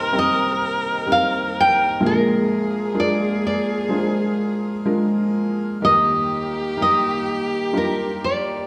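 From the first moment, a fingerpicked nylon-string guitar carries the melody up front with a fresh, full-bodied tone and an audible finger squeak, joined by a focused bowed viola second line with vibrato, a soft felt-muted upright piano accompaniment and a reedy, breathing harmonium holding chords in the background, as this nostalgic, hopeful acoustic folk-pop ballad fragment moves from Cm7 to Bb7 to Ebmaj7 inside the wet reverb of a recital hall.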